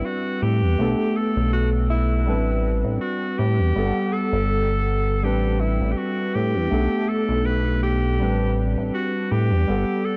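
Worn, warbling cassette tape with drifting pitch and light reverb colors this nostalgic, melancholic vaporwave excerpt, cut from a longer piece and moving in a straight 4/4 through Am11, Bm7 and Gmaj9 chords. A bright, punchy alto saxophone carries the melody with light vibrato and tape echo, while lo-fi synth keys with subtle chorus and 12-bit sampler grit supply mellow, decaying accompaniment. Up front, a glossy, nasal chorused synth bass with a filter pluck holds the low end until 9.8 seconds.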